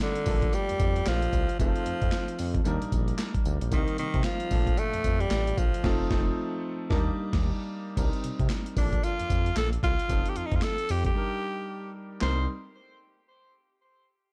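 A dark, dry production frames this confident, punchy new jack swing excerpt at 113 BPM in C dorian, swung on the sixteenths, where a raspy, forceful tenor saxophone sits up front carrying the melody with light vibrato over a clear, open concert grand piano accompanying through Bbmaj7, F7, Ebmaj7 and Cm7 changes. A compressed, gritty breakbeat kit with thumpy kick, medium-tuned snare, handclaps, hi-hat, tambourine and crash sits up front, while a smooth sawtooth-and-triangle synth bass enters at 0.3 s with sustained notes. The band hits an accent from 5.8 to 8.0 s, and a break at 11.2 s sets up a fresh section at 12.2 s before the cut.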